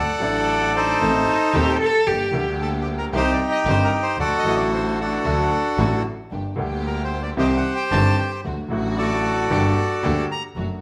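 A rubato 4/4 tango at 113 BPM in G harmonic minor, this passionate, sultry fragment of a longer piece sets a reedy, bright bandoneon melody up front over a worn baby grand piano with long sustain and a clear, focused bowed double bass with vibrato. A rich solo cello slides in with expressive portamento and a soft attack for a brief second line from 1.3 to 2.5 s, while a smooth, even studio string section adds bowed stabs in the background. The band plays live in a stone room whose wet reverb surrounds the parts as the harmony circles between D, Gm and Cm.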